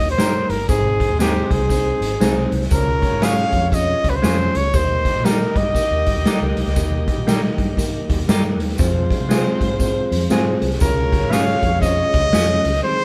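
A clear, close-miked trumpet carries the jazz-style melody up front with light vibrato, dropping out at 6.6 seconds and returning at 10.8, over this joyful, uptempo 1960s-style soul excerpt at 119 BPM with a swung 4/4 feel, where a loose horn section sits in the background, a tine electric piano plays through its built-in speakers, a foam-muted fingered bass stays round and amped, a raw garage drum kit with punchy kick and rolled-off top sounds in a bright stone room, a hollow-body guitar adds stabs with spring reverb, a jingly tambourine rides close and dry, and a soft, flute-like tonewheel organ with key click enters at 6.8 seconds on sustained chords, all captured as a band playing live in one room.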